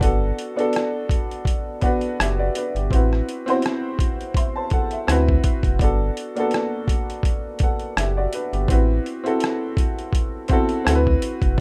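A rough home-demo mix with light reverb frames this short, soulful, late-night neo-soul and R&B cut at 83 BPM, its sixteenths gently swung as it cycles twice through Gmaj7, Am69 and D13. Up front, a woody, slightly detuned upright piano with a worn yet clear character comps through plate reverb, while a deep sine-and-triangle sub bass doubled at the octave holds sustained low notes. A gritty, compressed, pitched-down sampler-style boom bap kit sits beside the piano with a thumpy kick, hi-hat and rim click.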